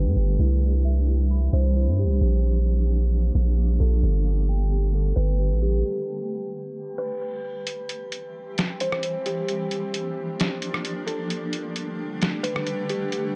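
Dark, warm digital ambience frames this dreamy, blissful hip hop excerpt of atmospheric cloud-rap in C major at 132 BPM with a half-time feel, where a buzzing, woody kalimba melody rings over a blurred, evolving granular cloud pad and soft, muted synth-key arpeggios sitting in the background, a deep sine 808-style bass holds long notes up front until 5.8 s, and a compressed, pitched-down, muffled lo-fi drum kit of hi-hat, rim click and snare enters at 7.7 s for the closing break.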